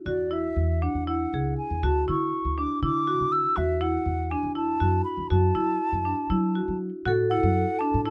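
A hollow, pure-toned concert flute carries the melody up front with close-miked vibrato and tongued notes, over bright, percussive marimba arpeggios on rosewood bars and a woody pizzicato upright bass on steel strings. This restless yet hopeful contemporary chamber excerpt moves in 7/8 at 239 BPM in eighths, in A major, through Eadd9, D, A5/E and F#m before settling on A5. At 7.1 s a metallic vibraphone with fast motor vibrato rings in on a brief second line, all within a dark production and a moderate booth ambience.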